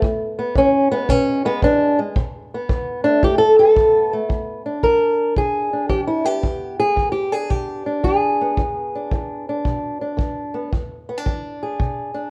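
A fingerpicked old ladder-braced acoustic guitar sits up front in this acoustic country blues fragment, its old strings giving a dark, woody, boxy voice that carries the melody from low E2 up to A#4 under a touch of plate reverb. The feel is soulful and rollicking, with swung eighth notes in 4/4. The guitar takes a solo turn over E and B7 in the opening 4.3 seconds, then the second section moves to E7. A tight acoustic kick drum, played with brushes in a studio room, sits lower in the mix and stops at 12.0 seconds, just before the guitar ends. The whole recording has the worn, warbling character of old cassette tape, with a warbly pitch drift and modest booth ambience.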